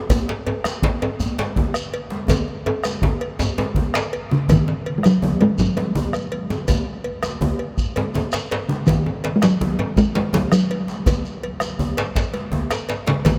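A festive, earthy West African drum ensemble opens at once in 12/8 at 110 BPM: a dark bombo and bright, thin-skinned congas sit in the background, a dry metallic cowbell rings close by, a grainy, mellow shekere sounds from farther off, and two deep djembes share the groove, one distant with metal rattles and hard hands, the other compressed and saturated under soft hands. A drum fill starts at 2.3 s, and at 4.3 s a talking drum enters up front with a short ring, carrying the melody between C#3 and G#3. The whole excerpt sits in a vast cathedral-like reverb, cut from a longer piece.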